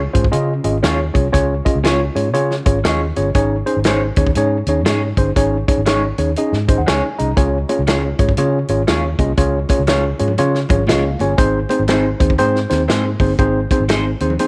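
A worn, slightly out-of-tune tine electric piano sits up front over a dark, foam-muted bass and a punchy, natural drum kit in this danceable, swung 1960s-style soul excerpt, with slightly broken-up guitar stabs through a phaser and lo-fi amp, piano fills at 6.4 and 10.6 seconds, and very quiet, high-tuned congas joining at 7.4 seconds in a small, lightly reverberant room.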